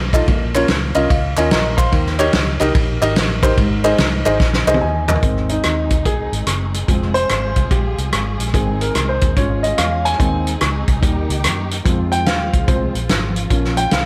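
A big arena sound with lush hall reverb frames this jubilant, hopeful uptempo gospel clip at 145 BPM in Ab major, swung in 4/4, cut from a longer piece. Up-front drums with a fat snare, punchy kick and dark cymbals drive alongside a round, foam-muted vintage electric bass, while an intimate grand piano with audible action noise and slapback echo adds fills before taking a solo from 5.2 seconds. Crisp handclaps sit in the background until 5.2 seconds, when a bowed studio string section with vibrato and portamento enters on sustained chords under the piano.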